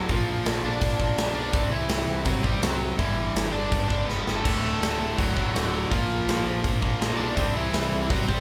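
Rowdy and upbeat, this short cut from a longer punk rock piece charges along at 165 BPM in a straight 4/4, with a crunchy overdriven lead guitar up front carrying the melody over two tight, bright distorted rhythm guitars driving riffs in the background and a growling, overdriven picked bass underneath. A big acoustic drum kit sits forward with a punchy kick, medium-tuned snare and bright crash and hi-hat, and a fill at 4.1 seconds brings in a heavy, double-tracked high-gain guitar riff at 4.4 seconds. The band sounds like it is playing live together in one large studio room, with a moderate reverb over chords moving through Bb, C, G and D.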